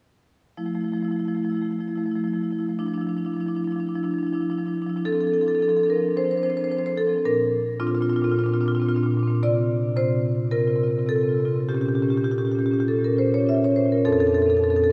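The rhythm moves freely in a rubato 4/4, with the pulse drifting between 97 and 112 BPM. This is a contemporary classical piece for solo marimba in F major, flowing and playful in mood, and it is cut from a longer work. Played with medium hard mallets, the marimba sounds bright, percussive and up front, ranging from F2 up to E5 from 0.6 to 14.9 seconds. The harmony opens on Fmaj7 and Dmadd9/F, then a second section from 5.1 seconds moves through F6, Bbadd9, C9sus4 and Bbm6 before settling back on F6 at 14.1 seconds. The instrument rings out in the wet cathedral reverb of a church or concert hall, with a long 4.8-second decay.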